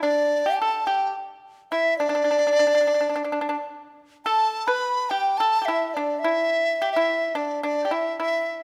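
Heard close and detailed in a moderate stage reverb, this short pastoral fragment of Chinese traditional chamber music moves at a graceful 107 BPM in a straight 4/4, set in the D zhi mode. A mellow large dizi carries the melody up front, its bamboo tone airy and touched by a buzzing membrane, with soft attacks and expressive vibrato. Beneath it, a bright, dry pipa played with fingerpicks adds a percussive second line for the full 8.6 seconds.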